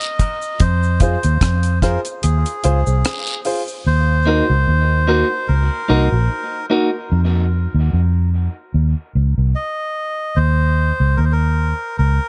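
A dry, close-sounding dub reggae excerpt with a dulled top end and a meditative, heavy mood, in which a reedy, breathy melodica carries the tune through dub echo over a dark, round, punchy muted bass that sits up front; a deep drum kit with a tight kick, hi-hat and rim click drives the opening break alongside filtered, echoed cabasa and guiro, the drums stopping at 3.7 seconds and the percussion just after, while woody upright piano stabs ring through echo until 6.9 seconds and a clean, picked electric guitar adds echoed accompaniment from 4.3 seconds.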